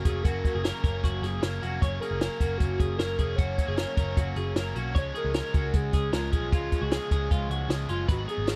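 The sound is dry and close, with little reverb, like a 1970s studio recording, and the drums sit up front. This bright, breezy slice of jangly indie pop runs at 153 BPM in a straight 4/4, in F# major tuned to A4 = 438 Hz, moving from F# to C# at 5.0 seconds in a short passage cut from a longer piece. A small acoustic cocktail drum kit enters at 0.1 seconds with a high-tuned snare, a punchy kick and hi-hat, alongside a dark, round, foam-muted picked electric bass. A crunchy overdriven guitar fills out the accompaniment, while a clean, twangy twelve-string electric guitar plays compressed arpeggios colored by slapback echo. Over them, a warbling, nostalgic lead blends triangle and sawtooth tones, detuned and treated with chorus and vibrato, with a fast attack and sustained notes that carry the melody.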